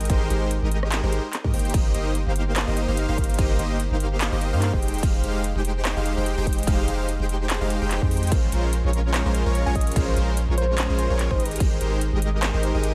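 This lush, euphoric future bass excerpt opens with huge, detuned supersaw chords pumping against the sidechain and trailing a digital delay, while a deep, sine-toned 808-style bass sits up front beneath them and a big-room dance kit lays down metallic hats, handclaps, rim clicks and crash cymbal, all set in studio reverb. A punchy, layered electronic kick enters at 0.1 s. The half-time feel carries a light swing on the sixteenths as the harmony moves from Abmaj9 through Cm7/G, Fm9 and Bbm9 before returning to Abmaj9. At 9.7 s a soft, round, keys-like FM lead appears in the background, its chorus, vibrato and dub echo giving a gentle shimmer until it stops at 11.4 s. The kick drops out at 11.7 s, leaving the glowing chords, dark bass and kit within a digital ambience.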